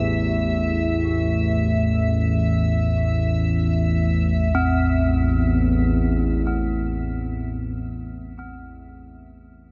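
Ominous and dark, this dark ambient drone excerpt in free time rests on an up-front, warbling analog drone with a vintage sawtooth character and chorus, while a close-miked, ringing bronze metallophone plays arpeggios through delay and an icy, crystalline glass pad hovers until 4.6 seconds, all bathed in huge ambient reverb with a cassette tape tone as the harmony moves from Emadd11/A to Am at 4.5 seconds.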